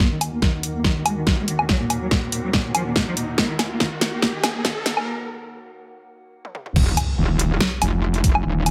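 Aggressive and heavy, this half-time wobble dubstep excerpt at 142 BPM in Eb minor builds over a dark, bowed cello melody with vibrato and portamento under a filter sweep, an evolving, detuned wavetable pad with 12-bit grit and sidechain pumping, tape-warm layered drums with a huge snare and bright hats, a knocking electronic kick, and a background riser, then breaks at 5.1 s before dropping at 6.8 s into a metallic, distorted FM wobble bass up front with an impact.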